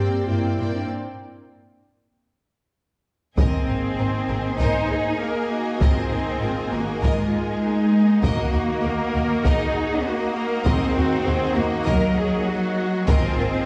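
Epic and dramatic, this cinematic orchestral cue opens on a G minor chord, breaks off at 0.9 seconds, and resumes at 3.4 seconds, when a close, lush string section adds sustained chords and a vintage, band-limited taiko ensemble pounds in with heavy sticks, all beneath a soft-attack violin melody in the background, an intense chamber violin second line, smooth even violas, mellow French horns holding chords further back, up-front cellos and woody double basses on the bass, set in a wet scoring-stage reverb heard from deeper in the room.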